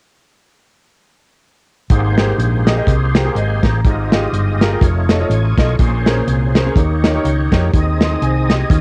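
Jubilant and reverent, this short uptempo gospel excerpt swings at 124 BPM in Ab major, with a smooth, punchy soul drum kit and a round, dark hollow-body electric bass sitting up front from 1.9 to 8.8 seconds. A clear concert grand piano with deep bass and long sustain supplies the accompaniment, while a thick, gritty overdriven tonewheel organ with key click, chorus vibrato and a slow rotary speaker holds sustained chords and adds a fill at 4.8 seconds. Rich chords like Abmaj9, F7alt and Bbm9 color the progression, and the piano, organ and drums carry a cassette tape character within a small, homespun room sound.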